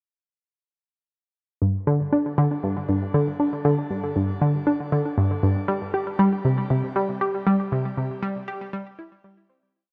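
This ambient piece moves at 118 BPM in a straight 4/4 with an expansive, luminous mood, carried by a lone analog pluck that enters at 1.6 seconds and plays until 9.7 seconds. Up front and round, with a detuned sawtooth-and-square character, a noise layer, a filter sweep and a fast attack, the pluck repeats a five-step loop that drifts against the bar, treated with chorus and delay. A moderate shimmer reverb with a long tail surrounds the sound, and the whole piece fades out from 7.0 seconds.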